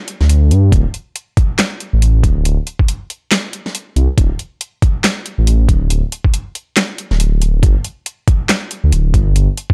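A swung, half-time groove drives this dark, meditative deep dubstep excerpt, where a muffled, thumpy, pitched-down kick and an up-front electronic kit of handclaps, metallic hats and a huge snare sit alongside a rumbling, beating, detuned sawtooth bass, the whole mix dry and gritty with little reverb.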